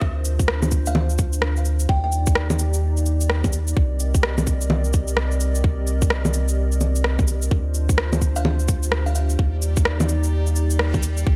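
A tight, tape-warm electronic kick and a round, deep sub bass with tube saturation pulse under a dark, detuned analog pad with chorus and sidechain pumping in this ghostly, rainy future garage excerpt in C minor at 128 BPM with a 16th-note swing, joined by up-front electronic cabasa, shaker, rim click and bongos, a buzzing, woody kalimba melody with tape echo at 0.9 and 8.4 seconds, and a reversed, granular swelling texture drifting in the background from 8.8 seconds over chords moving from Dm7 through Ebmaj7, Cm7 and G7sus4/D back to Ebmaj7.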